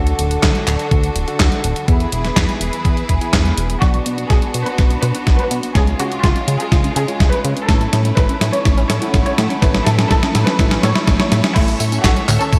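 Italo disco in a sunny, romantic mood, cut from a longer piece: a thumpy electronic kick and an up-front, detuned 8-bit drum machine of snare, claps, congas, hi-hat, tambourine and crash, all treated with gated reverb, drive a glossy, nasal chorused synth bass with tube saturation, while smooth symphonic strings hold sustained chords and a tine electric piano with gritty 12-bit sampler character adds background stabs; at 3.8 s a rich, distant violin section enters with the melody through digital delay, alongside a round analog pluck whose arpeggios carry a filter sweep as a drum fill runs through to 11.6 s, all within a lush hall and bright 1980s-style digital production.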